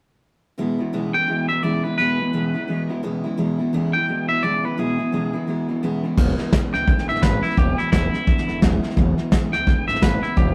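A rough rehearsal-room recording with light reverb captures this short, rollicking rockabilly excerpt in E mixolydian, swinging at 172 BPM with a retro feel. A full-bodied, up-front steel-string acoustic guitar and a slightly broken-up electric riff through a small old amp start together at 0.6 seconds, and a bright, scooped lead guitar with slapback echo carries the twangy melody from 1.1 seconds. At 6.2 seconds a woody, thumpy upright bass on gut strings and a soft brush kit with dark cymbals and a punchy kick join in, filling out the groove.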